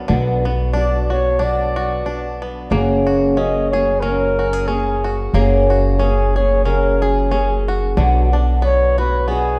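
This acoustic folk piece for a small band moves at 91 BPM in 4/4, with a light swing on the eighth notes and a hopeful, nostalgic mood. A fingerpicked twelve-string acoustic guitar carries the accompaniment up front, its old strings giving a woody, boxy tone with a shimmering, octave-doubled ring. A bright, twangy bluegrass banjo adds percussive arpeggios played with fingerpicks, sitting lower in the mix. Beneath them, a pizzicato upright bass on steel strings sounds close and deep. At 0.7 seconds a solo flugelhorn takes the melody in a classical style, warm and roomy, with light vibrato, set at a distance. The harmony moves from Bm to F#add9 at 2.7 seconds and back to Bm at 8.0 seconds, all within a moderate scoring-stage reverb and a dark, warm production.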